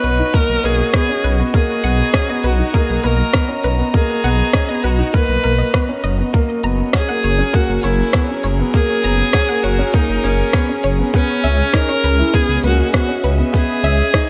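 A straight 4/4 pulse at 100 BPM carries this luminous, tender piano and strings electronica excerpt, with a tight, up-front electronic kick entering at 0.3 seconds beneath an electronic kit of crisp hi-hats and rim clicks re-recorded in a large room. A deep, rumbling detuned saw bass sits up front with a beating, fast-attack tone and sidechain pumping, while a dark upright piano plays a mellow, woody riff with long sustain and digital delay. Above them, a dark string quartet holds sustained chords with light vibrato, soft attack and an airy sul tasto bow, intimate and close, also pumping with the sidechain. A bright, focused solo viola carries the melody up front with vibrato and digital delay, and a very quiet unison pluck adds lush, punchy arpeggios with short decay. The harmony rests on F# before shifting to C#m7 at 11.1 seconds, all set in light reverb and digital ambience with a soft-topped sound.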